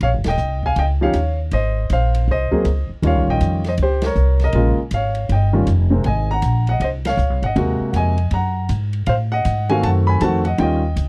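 A jazz piano trio opens together with a shared band accent at 0.2 seconds, setting a playful, warm mood at a brisk 159 BPM in 4/4 with a light swing on the eighth notes. The baby grand piano carries the melody up front, its warm, natural tone and short sustain shaping lines that range from C3 up to Cb6. Beside it, the pizzicato upright bass sounds woody and dark on steel strings, also close in the mix and moving between Eb1 and A2. Further back, the acoustic drum kit plays hi-hat, kick, ride and snare in a small room, smooth overall with dusky cymbals, a medium-tuned snare and a punchy kick. The harmony moves through Eb9, Abadd9, Bbm7 and Ab9 before arriving on Adim7, while the trio hits further accents together at 4.0 and 7.0 seconds. The sound is dry and close in a 1970s studio style, and this short passage is cut from a longer piece.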